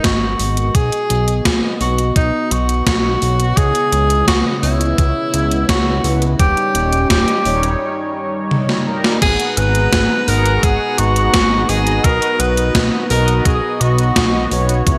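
A straight 4/4 groove from a thumpy, tape-toned electronic kick and a gated 80s digital drum machine drives this moody synthwave excerpt, with the machine's crash, hi-hat, snare and toms overdriven, soaked in gated reverb and placed up front. Beneath them, a fat, detuned analog bass sits up front as well, pumping with sidechain compression. A shimmering pulse-width pad holds sustained chords in the background with a slow attack and its own sidechain pumping, while mellow, round synth brass adds chorused stabs with a dark, brassy edge. Over it all, a tenor saxophone with light vibrato and a soft attack carries a jazz-style solo melody, up front yet distant and roomy, its notes trailed by delay until 14.5 s. A filter sweep moves through the pad during the opening, and a break at 7.8 s, with a drum fill entering at 8.5 s, leads into a second section at 9.2 s, where the opening chord returns. 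Moderate plate reverb and bright 1980s-style digital production frame the whole excerpt.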